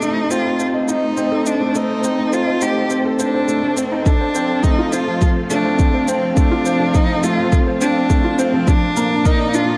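Hypnotic and cinematic, this piano and strings electronica build-up sets a rich, expressive bowed cello melody with vibrato and portamento over a soft, felt-muted upright piano riff up front, while a dark studio string section holds filtered, sidechain-pumped chords in the background, a barely audible detuned saw bass rumbles underneath and an electronic shaker ticks throughout, until a deep, layered electronic kick drum enters at 4.1 s, all in a lush hall reverb with a dark, warm production carrying lossy compression artefacts as the harmony moves from A diminished to F and then Bb.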